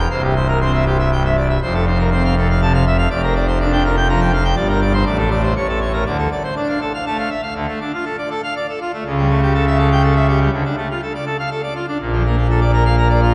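A classical organ toccata in 3/4, this short excerpt from a longer piece rings out jubilant and majestic on a single pipe organ at full organ, its bright mixtures and romantic voicing placed up front across a range from C1 to Bb5. The harmony moves through C, F and Gm7/F before settling into the home minor key at 4.6 seconds, then a second section from 7.6 seconds passes through A7/C# and Dm before landing on Bbmaj7. A cathedral reverb with a 5.1-second decay lets every chord bloom and hang in the vast space.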